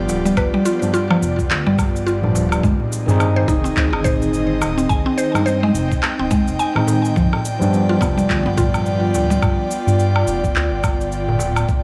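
This hypnotic, meditative fragment of organic downtempo at 106 BPM, with a swung sixteenth feel in G phrygian dominant, sets a barky, overdriven tine electric piano with tremolo, digital delay and shimmer reverb in an accompanying role, moving between G7 and Ab over a breathy, detuned pad with chorus, a woody FM mallet-like pluck playing arpeggios, a smooth, dark synth bass pumping beneath a thumpy, compressed electronic kick, produced electronic shaker, woodblock and handclaps, and a crisp metal-shell darbuka tucked in the background, until the electric piano drops out at 9.7 s.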